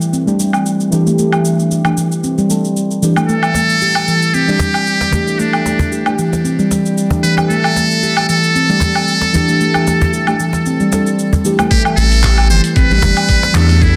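A ringing stainless-steel handpan plays arpeggios over an overdriven, layered deep house kit of cabasa, handclaps, hi-hat and woodblock, joined almost at once by soft, felt-like synth keys with chorus, phaser, sidechain pumping and tape echo, setting an earthy, warm organic downtempo groove at 114 BPM in A minor with a light swing. At 3.3 seconds a buzzy, brilliant trumpet with a metal mute takes the up-front solo melody with light vibrato and delay, and a snappy, close and dry cajon joins soon after. A gritty, thumpy electronic kick arrives at 11.7 seconds and a deep, round analog bass with sidechain pumping at 12.0 seconds, all within a lush hall reverb and a dense, heavily limited modern master in this short cut from a longer piece.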